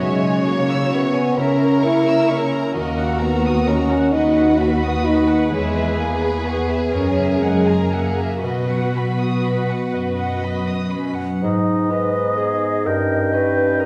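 A dark, reverberant recital-hall sound surrounds this tender fragment of a slow romantic orchestral movement in B major, unfolding in a rubato 6/8 at roughly 39-45 BPM. Two violin sections sing with vibrato and portamento: one carries the expressive melody while the other traces a higher second line. Beneath them sit a smooth, even viola accompaniment and a lush, focused cello bass placed up front. A distant French horn section holds soft-edged sustained chords, and a ringing concert harp spins fingerpicked arpeggios from start to finish. A roomy clarinet enters at 11.0 s, and the viola and cello sections stop at 11.2 s. From 11.4 s, a clear, present oboe, an airy flute in the background and a bassoon with light vibrato join the clarinet as the harmony turns from B toward G#m and D#7/G.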